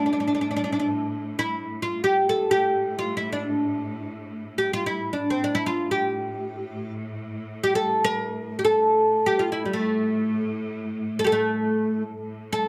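A plectrum-plucked, fretless oud sits up front and carries the melody, its double strings giving a woody, deep tone as it moves between G3 and a microtonal Bb4 in free time. Beneath it, a studio cello section holds a bowed drone on A2, clear and focused with vibrato, yet mixed low and set at a distance so its lush ensemble sound forms a quiet bed. Both parts play for the full 12.7 seconds of this excerpt, which is cut from a longer Persian modal piece and stays in a single section. A moderate studio reverb adds a modest sense of room around the players. The mood is hypnotic and soulful, with the acoustic oud's melodic line drawing the ear over the steady cello drone.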